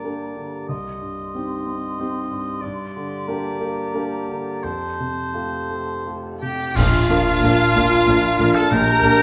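The up-front concert grand piano anchors this bittersweet, longing cinematic cue as accompaniment, its polished tone ringing with long sustain and deep bass, and its action noise audible close up. It plays in a rubato 3/4 at around 84-95 BPM, with a distant, hollow silver flute, a clear, roomy oboe and a mellow clarinet in the background, all weaving secondary lines over a Gm, Cm and Fadd9 progression. Dark cymbals and a concert bass drum with a cymbal swell enter at 2.6 seconds, sounding as if they were played in a small room. At 6.4 seconds a distant violin section takes the melody with smooth vibrato, joined by quieter second violins and lush violas. At 6.8 seconds the harmony opens onto Bb with an ensemble accent, as tight background French horns hold chords and the cellos and basses settle in low, the cellos adding expressive portamento. A recital hall reverb gives the whole orchestra a wet, spacious glow in this short excerpt from a longer piece.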